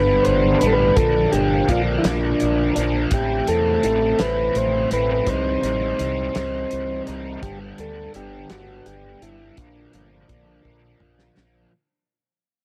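A slow 6/8 pulse carries this mysterious, hypnotic psychedelic rock passage, cut from a longer piece and fading out throughout, with a damped 70s drum kit (dry, fat snare and tight kick under a rolled-off top) playing from 0.2 seconds and closing on a drum fill at 10.7 seconds. An up-front, double-tracked overdriven electric guitar picks a riff through a rotary speaker, while a growling fingered electric bass, overdriven and punchy, holds the low end. Above them a reedy, clean vintage combo organ carries the melody through an analog delay over chords moving from G and Bb through Am and Cm, all set in a small room with light reverb.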